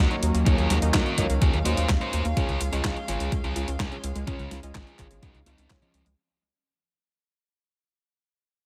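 Nostalgic and melodramatic, this brief italo disco fragment, cut from a longer piece, moves at 126 BPM in a straight 4/4 and fades out from 1.1 seconds to its close at 6.2 seconds. A dark, picked electric lead guitar carries the melody with overdrive and delay, while a studio string section holds sustained chords with light vibrato and a reedy, gut-string tone. Underneath, a round analog bass sits up front with a deep, mellow square-and-sine character and a wave-folded, evolving edge, and a thumpy sampler-style kick enters at 0.5 seconds. A clean 12-bit drum machine supplies handclaps, hi-hat and a medium-tuned snare, both it and the kick sounding tape-warmed and re-recorded in a large room. Very quietly, a lush, warbling unison pluck traces detuned sawtooth arpeggios, and a vintage electric grand piano with a clangy low end adds stabs from the background, all over a harmony moving from Ebm7 to Db within a digital ambience.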